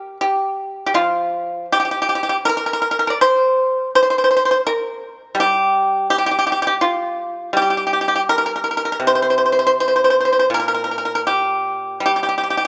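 A solo pipa carries this short fragment of Chinese traditional music from 0.0 to 12.7 seconds, its bright, percussive fingerpicked tone sitting up front and close. The mood is elegant and longing, and the rubato pulse lets phrases stretch and settle with a free, unhurried feel in 4/4. The lute moves through a range reaching from low Bb2 up to D5 in a G yu mode, tuned slightly under standard pitch at A4 = 438 Hz. Though the instrument itself sounds dry and direct, it is placed in a moderate scoring-stage reverb whose 1.9-second tail gives the overall production a dark, warm cast. Cut from a longer piece, the passage captures a single unbroken stretch of solo playing.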